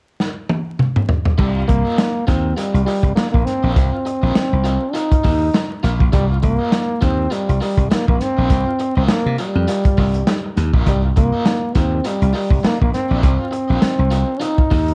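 A gritty, saturated breakbeat drum fill opens at 0.2 s before this sly funk groove settles at 101 BPM on swung 16ths in C minor. From 1.4 s a forceful, up-front jazz trombone solo with scooped notes and light vibrato rides plate reverb and tape echo over a punchy slap bass holding a Cm7 vamp, while a bright overdriven guitar with tremolo and plate reverb sits low beneath, all wrapped in a dark production with vinyl crackle.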